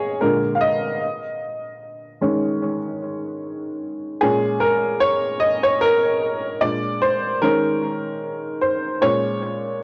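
A 75 BPM pulse in 4/4 carries a light swing on the sixteenths, setting a nostalgic, hazy hip hop mood in this short fragment cut from a longer piece. An upright piano plays alone for the full 9.8 seconds, ranging from Bb2 to F5 with a worn, woody, slightly detuned tone and short sustain, sitting up front in the mix. Its sound is coloured by cassette tape character and an analog delay, lending it a faded, dusty quality. The harmony circles through Bb7, Eb7sus4 and Bbm7, with the sequence returning at 6.6 seconds. A modest small-room reverb surrounds an otherwise dry, gritty hardware recording, keeping the whole fragment intimate and close.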